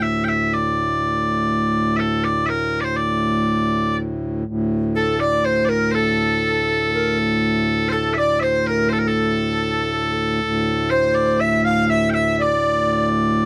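Driving and ancient in mood, this medieval dance moves at 121 BPM in a straight 3/4, heard as a short cut from a longer piece. Loud bagpipes carry the melody from the start, their piercing, continuous tone sitting up front as a solo voice. Beneath them a hand-pumped harmonium holds a low drone, mellow and breathing, with a boxy small-room character that also sits close to the listener. At 5.0 seconds a bass recorder enters with a second line, airy and woody with vibrato, tongued notes, audible chiff and lifted highs, continuing until 13.1 seconds. The recording is dry and close in a 1970s studio style, touched by light reverb.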